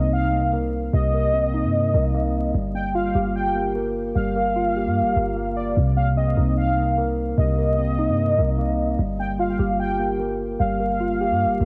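A home cassette recording with vinyl crackle and light reverb frames this brooding, melancholic hip hop piece, cut from a longer track and moving in a half-time feel. A mellow tine electric piano plays arpeggios throughout, colored by phaser, a low-pass filter, tape echo and cassette saturation. Above it, a velvety synth lead with chorus and vibrato carries a sustained second line in a high register, its smooth sawtooth-and-triangle tone also passed through tape echo. Underneath, a clean 808-style bass gives deep, boomy, sine-like hits that decay into darkness. The harmony moves slowly between Cm7 and Gm7, returning to the minor seventh chords in turn across the 11.7 seconds, keeping the mood heavy and wistful.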